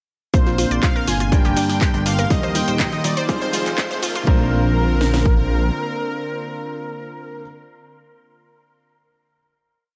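Progressive house with an expansive, euphoric mood, this short piece is a single build that resolves onto a final chord. A punchy four-on-the-floor kick and cracking snare sit up front, with programmed hats, claps and shaker, a very quiet cloth-damped breakbeat, and a deep, rumbling detuned saw bass with tube saturation that drops out at 5.7 seconds. A smooth, evolving supersaw carries the hook phrases with dub echo, over a lush, warbling unison pad and a glassy wavetable pluck repeating sixteenth-note riffs over a pedal note. A grand piano adds held chords with syncopated pushes through a low-pass filter, and filter sweeps on the piano and pad run through the build-up. A very quiet riser and a reversed, dreamy granular swell on a high note lead into the final chord at 4.3 seconds, and sidechain pumping on the melodic parts and bass gives the mix its breathing motion.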